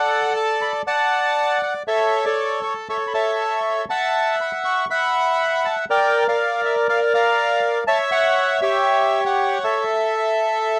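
A reedy, bright bandoneon plays alone and up front through this short passage cut from a longer tango, close-miked and dry in a passionate, elegant mood. The phrasing is rubato, moving over Bm7/A, A, Esus24, Bb and A7 before the harmony drops away at 9.9 seconds. Light reverb and a dark production frame the solo line.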